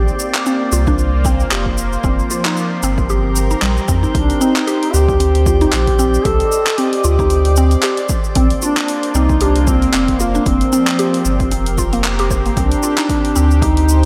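A big, arena-scale sound with moderate concert-hall reverb frames this hypnotic, mystical organic downtempo piece in C minor at 114 BPM, its 16ths lightly swung. A deep, round sub bass and a detuned sawtooth analog pad with a moving notch both pump from sidechain beneath woody FM mallet plucks. The plucks play arpeggios through chorus, phaser, tape echo and slapback, while a glassy texture of drifting overtones hangs in the background and a deep house kit of handclaps, hi-hat and shaker sits with a punchy electronic kick. At 4.2 seconds a dark, distant duduk enters with a folk-style solo melody, its vibrato and scooped notes trailed by delay and slapback echo.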